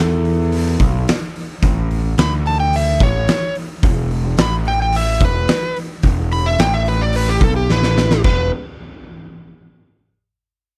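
Raunchy and gritty, this blues rock and southern rock power trio excerpt, cut from a longer piece, puts an overdriven, fingered slide guitar solo up front over a punchy, fuzz-driven picked electric bass and an oversized low-tuned drum kit with dark cymbals, a fat snare and a saturated stone-room sound, closing its solo with a drum fill at 7.7 seconds just before the chords shift at 8.2 seconds.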